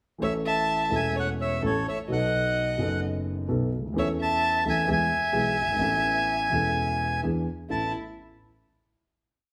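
Caught live in a large studio with moderate reverb, this short, complete tango unfolds with elegant, playful rubato as a reedy, dark bandoneon carries a motif-based melody up front, a single close, bowed violin adds an expressive harmony line mostly in thirds with vibrato, portamento and soft attack, and a mellow, vintage grand piano with deep bass and audible action noise plays the tango rhythm in uneven groups of three and two eighths before the piece comes to rest on a final chord at 7.7 seconds.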